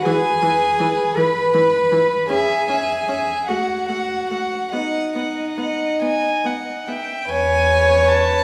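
A clear, nasal cello sits up front in this lyrical fragment of a slow romantic movement for string quartet in 6/8, taken with rubato, carrying the bass with a soft attack and a pure, floating tone. Above it, a dark, woody first violin sings the melody with vibrato, while the second violin traces a smooth second line with gentle onsets. The viola fills in the accompaniment with light vibrato and an airy, intimate bow, and all four players draw their bows sul tasto. The harmony moves from E through C#m and F#m/A to B, then settles back on E at 7.3 seconds as a new section begins. A wet recital-hall reverb places the quartet further back in the room, wrapping the warm mood in a soft glow.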